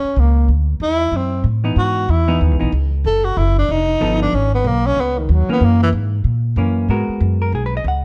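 A dark, lightly reverberant production frames this cool, moody fragment of small-group swing and bop at 187 BPM, where a breathy, whispered tenor saxophone carries the melody with vibrato, subtone and scooped notes until 5.9 seconds, a woody, thumpy pizzicato upright bass on gut strings holds the low end throughout, and a clean, picked hollow-body electric guitar enters at 1.6 seconds to accompany through chords such as C#m9, F#m7 and F7#11.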